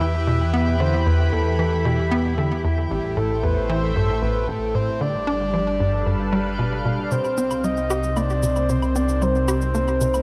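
Expansive and mysterious, this short cut from a longer piece of ambient, sequencer-driven space music moves at 114 BPM in a straight 4/4, settling into C minor at 7.1 s. A breathy, flute-like synth lead carries the melody up front with vibrato, chorus and delay, floating over a lush unison pad whose detuned, warbling chords sit thick and full-bodied beneath it. Driving the piece is a tight sequencer bass riff with a nasal, punchy filter pluck, coloured by analog chorus and delay and sitting slightly louder than the other parts, while a round sine sub bass holds down the low end. For the first 7.1 s a twinkling granular texture sparkles faintly in the background on a single high note, wrapped in its own reverb, as the chords pass from Em through Am to G7. When the harmony shifts to Cm7 at 7.1 s, dry, tape-tinged electronic cabasa and woodblock enter with delay, and a moderate plate reverb gives the mix a spacious, airy depth.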